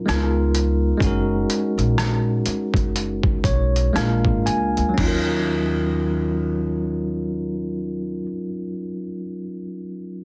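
Smooth and sultry, this neo-soul R&B fragment slows over its opening 5.0 seconds as a bright, bell-like tine electric piano with plate reverb carries chords from Db13 through Gb6 and Bb7 to Ebm9 and plays a fill from 2.9 seconds, over a woody pizzicato upright bass on steel strings and a gritty, pitched-down boom bap sampler kit with an overdriven, thumpy kick, hi-hat, rim click and crash that drops out at 5.3 seconds, all framed by light reverb and a heavily squashed radio sound.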